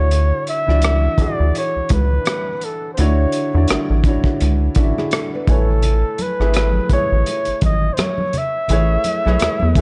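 Soulful and smooth, this 84 BPM neo-soul R&B excerpt sets an up-front flugelhorn melody with vibrato over intimate grand piano with audible action noise, a rubbery, hollow square bass, and a gritty, saturated breakbeat kit of hi-hat, tight kick and rim click, while a dark, fingerpicked nylon-string guitar with finger squeak slips in briefly at 4.8 seconds, the harmony moves from Dmaj9 to Amaj9 at 5.5 seconds, and soft-handed congas join in the background at 5.8 seconds, all in a dark, warm studio reverb.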